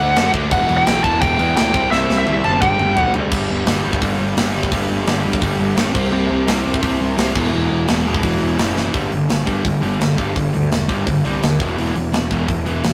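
A rough rehearsal-room recording with tube saturation and light reverb frames this short cut from a longer punk rock piece, rebellious and upbeat at 171 BPM in a straight 4/4 feel in G major. A bluesy lead guitar, warm and distorted, opens with a brief picked melody high in its range and drops out at 3.1 seconds. Underneath, a dark, double-tracked overdriven electric guitar drives a picked riff throughout, alongside a growly fuzz bass, direct and amped, that sits up front. The tight metal drum kit enters at 0.2 seconds with a big-room acoustic sound, bright cymbals, a medium-tuned snare and a tight kick, and plays a fill from 1.9 seconds into the next section. The harmony shifts from D, Em, C5 and G into a stretch of power chords on G5, C5 and E5, with another drum fill at 8.8 seconds leading into the closing passage.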